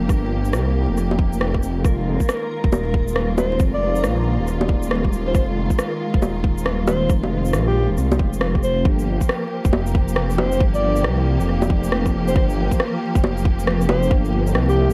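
Lush bowed strings holding Gm7 and Fm7 chords, a menacing detuned saw bass with tube saturation and sidechain pumping, and a faint reversed granular texture open this wistful, nocturnal future garage excerpt at 137 BPM in G phrygian, joined almost at once by a tight, overdriven electronic kick and roomy shaker, rim click and bongos with dub echo, before a mellow alto saxophone with vibrato and 12-bit sampler grit enters at 3.4 s, and a band accent at 8.4 s leads into the return to Gm7 as the texture fades at 8.9 s, the whole mix awash in echo and vinyl crackle.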